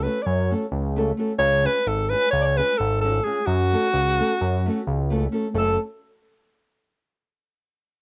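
Balkan folk in the manner of a wedding band, this bittersweet, fiery clip from a longer piece moves in a straight 9/8 over F#m, C# and back to F#m. A clear, smooth-topped alto saxophone leads up front with classical-style vibrato and a touch of cassette tape color, while a small, fingerpicked nylon-string guitar accompanies and a fat, nasal analog bass with a detuned sawtooth-and-square tone, fast filter pluck and transformer saturation holds the low end. All three parts play from 0.0 to 5.8 seconds, with light reverb and the homespun character of a cassette recording.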